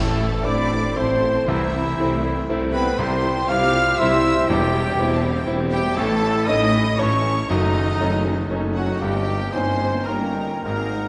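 Set in a reverberant scoring-stage space with a soft, rolled-off top, this brooding, passionate orchestral passage in a three-beat metre moves with rubato, taken from a longer piece. An up-front, clear grand piano with short sustain carries the melody alongside a close, rich violin section singing high with vibrato. Beneath them, second lines come from a distant violin section, a dark, roomy clarinet, a hollow, pure flute group and a warm cor anglais. A faint, smooth viola section supplies accompaniment, a mellow French horn section holds sustained chords and a tight trumpet section adds quiet stabs. The bass rests on a lush double bass section, a vintage-toned tuba and a cello section in the background.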